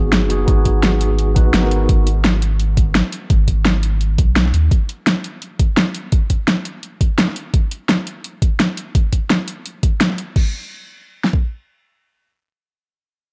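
Liquid drum and bass at 170 BPM in G# minor, soulful and melancholic, opens on a G#m7 chord with a clean tine electric piano through dub echo that stops at 2.1 seconds, while a deep, round sine sub bass sits up front until 4.7 seconds. Two layered, overdriven electronic drum kits carry the excerpt, one with crash, hi-hat and a fat snare, the other with kick and a fat snare, both re-recorded in a small room and placed up front. Light reverb and a dark production frame the cut from a longer piece, with the second kit running until 11.4 seconds.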